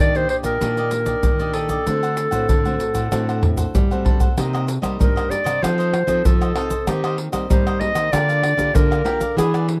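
Samba and choro in G minor at 96 BPM, this short excerpt cut from a longer piece carries a bittersweet, nostalgic mood, with a smooth-topped clarinet singing the melody up front in a classical style before taking a solo from 4.4 seconds. A bright, crisp picked cavaquinho and a fingerpicked nylon-string guitar, its finger squeaks audible, fill the accompaniment, while a second nylon-string guitar with fresh strings plays the bass line in the background. Tube shaker, pandeiro, tamborim and a deep surdo sit up front in a small room, with a drum fill at 3.1 seconds, all captured in a dry, close 1970s-style studio sound with light reverb.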